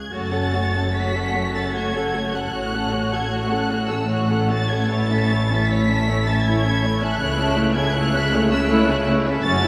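A long, wet church reverb surrounds this brief excerpt of a slow romantic movement for string orchestra in triple time, its rubato phrasing solemn and yearning. High above, the first violins carry an expressive, vibrato-laden melody with a smooth top, while a rich, distant second violin line and a focused viola accompaniment fill the middle. Beneath them, a clear cello section sits in the background as the bowed double basses anchor the lowest register.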